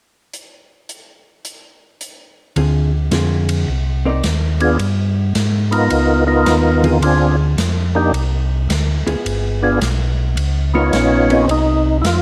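Smoky and late-night, this soul jazz organ trio excerpt swings in C minor at 108 BPM, opening on airy, polished big-band drums with hi-hat, ride and snare before a round, dark tonewheel organ bass with slow rotary speaker and a clean, picked hollow-body guitar enter at 2.6 seconds, and a fat, lightly overdriven percussive organ lead with key click, chorus vibrato and slapback echo arrives at 4.6 seconds over a light reverb and a moody progression of Dm7b5, Cm9, G7b9 and Db13 chords.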